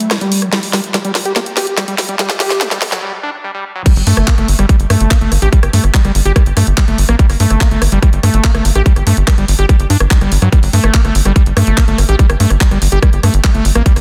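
A dense, heavily limited modern master with light digital ambience carries this driving, alien psychedelic trance excerpt in G harmonic minor at 144 BPM. A squelchy, gritty overdriven acid bass riff, with distortion, sidechain pumping, dub echo and a filter sweep, builds over a drum fill from the garage drum kit's cracking snare, handclaps, rim clicks, crash and hats, then a short break arrives at 3.0 seconds. The drop lands at 3.9 seconds, where an up-front, tight electronic kick drum enters alongside a punchy sawtooth sequencer bass with a mellow, decaying filter pluck.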